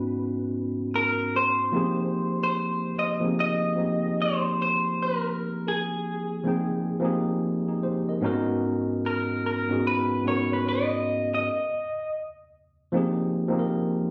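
A slow 74 BPM groove in 4/4 with a 63% swing on the sixteenths sets up this smooth, late-night R&B excerpt in F minor, tuned to A4 = 438 Hz, moving through Abm7, Fm9 and Abm9 chords. A worn, slightly out-of-tune tine electric piano sits up front through a combo amp, providing clean accompaniment across the full 14.1 seconds, while a picked, slightly broken-up electric guitar from a small old amp carries the melody with slapback echo until 12.1 s. The whole clip has the compressed, roomy sound of a phone recording in a small space, with added studio reverb.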